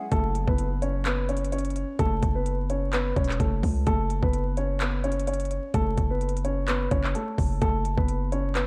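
A dark, mellow grand piano carries the melody from the very start, its short-sustained notes softened by a low-pass filter and trailed by delay, setting a brooding, eerie tone in F# minor at 128 BPM with a half-time trap feel. At 0.1 seconds a punchy, sine-based 808-style bass with a fast attack and decaying tail arrives alongside an electronic trap kit of hard-clipped kicks, crisp hi-hats and handclaps with a tape-warm edge, all sitting up front over a shift from F#m to Bsus2/F#. Light reverb and a bed of vinyl crackle give this cut from a longer hip hop piece a dusty, shadowy atmosphere.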